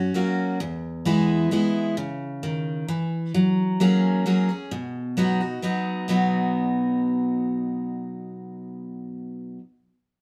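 Bluegrass in B major at 131 BPM in a straight 3/4, this driving, rustic excerpt features a bright, full-bodied picked steel-string dreadnought guitar playing solo and up front from 0.0 to 9.6 seconds, with audible finger squeak, moving through F#, E, C#m, F#add9 and B in moderate studio reverb that gives the sense of a band playing live in one room.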